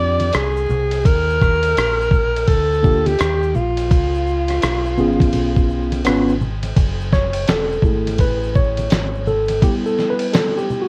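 Worn, warbling cassette tape with vinyl crackle and a small-room ambience colours this mellow, smoky jazz-hop excerpt at 84 BPM with a swung 16th feel, where a breathy, subtone alto saxophone with slapback echo and scooped notes carries the melody until 6.1 s over a lightly overdriven, slightly out-of-tune tine electric piano, a round, dark fingered electric bass, a gritty, compressed sampler-style drum kit with a thumpy kick and fat snare, and congas and tube shaker sitting in the background, before the electric piano takes a solo from 6.8 s.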